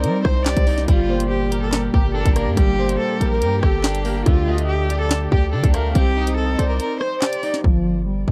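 Tense and cold, this short drill cut moves at 142 BPM in a half-time 4/4 feel in G minor, with a dark, warm production that carries little reverb. A bowed solo cello, dark and expressive with vibrato and portamento, carries the melody through a low-pass filter and delay, while a velvety detuned sawtooth synth lead sits in the background as a second line, treated with chorus and delay. An electric guitar on the edge of break-up, picked and compressed, supplies filtered accompaniment, and a distant, woody symphonic string section holds very quiet sustained chords beneath it all. Up front, a hard-hitting 808-style bass with a fast attack and a noise layer anchors the low end, and an electronic drill kit drives with a hard-clipped kick, sharp snare, bright hi-hats, handclaps and rim clicks. The harmony moves through Cmadd9, Gmadd9 and Dsus4, a break arrives at 6.8 seconds, and when the guitar, synth and strings stop at 7.6 seconds, the hi-hats drop out too, while the cello, bass and remaining drums carry on to 8.3 seconds.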